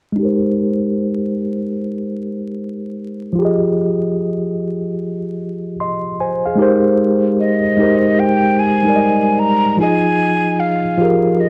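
A lightly swung 75 BPM hip hop groove in 4/4 and Ab major sets a cosy, dreamy mood as an up-front, mellow tine electric piano with a cassette-tape tint and a low-pass filter moves through Abmaj7 and Fm9, with a filter sweep across its first 6.6 seconds, before a breathy, close-miked silver concert flute with an unsteady straight tone enters at 7.4 seconds to carry the melody over vinyl crackle and a short, wet studio reverb in this fragment of a longer piece.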